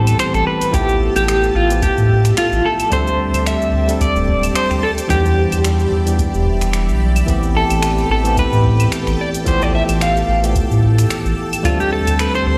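Sunset chillout with a warm, relaxed mood and a gently swung groove, heard here as a short cut from a longer piece. An up-front electric guitar sitting at the edge of break-up carries the melody, its picked, scooped tone colored by tremolo and digital delay. Beneath it, a bell-like tine electric piano plays clean, direct accompaniment through its own delay, while a shimmering ambient pad holds ethereal sustained chords treated with chorus, phaser and an octave-up sparkle. A round, sine-like sub bass anchors the low end, joined by a smooth R&B kit of claves, finger snaps, tape-tinged hi-hat and shaker, with a deep analog-style electronic kick entering at 0.7 seconds. The chords drift from Am9 through Fmaj9#11/A, D7sus4 and Em7 before cycling back, and the whole mix sits in a large, reverberant space that lends it a roomy, ambient glow.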